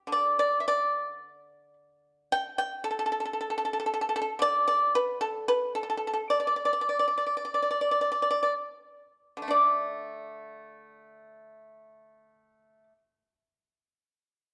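A solo pipa, plucked with fingerpicks and placed up front, opens this serene, pastoral fragment of Chinese traditional music at a free, rubato 36-58 BPM in 2/4, its percussive, warm tone ranging from D3 to G5 and slowing down between 4.4 and 9.5 seconds before it falls silent at 13.0 seconds, framed by a moderate recital-hall reverb in a dark production.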